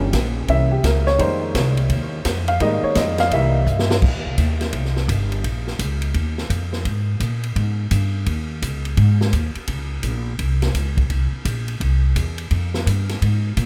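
This big band swing jazz cut in F minor moves at 170 BPM with a swung eighth-note feel and a swinging, brassy mood, and it is taken from a longer piece. An upright piano with a vintage, slightly detuned tone plays a solo over the opening seconds, moving through C7b9 and Fm11 before it stops at 3.9 seconds. Pizzicato upright bass, woody and up front, plays through the whole length, while a big-band drum kit of ride, hi-hat, snare, kick and crash enters at 0.1 seconds with a punchy kick and a medium-tuned snare. A drum fill at 3.7 seconds leads into the next section at 4.0 seconds, where the harmony turns to a rootless Fsus2 and passes through Bbm, a string of suspended chords and C7 before resting on Fmadd9. The recording carries light reverb and a small-room ambience.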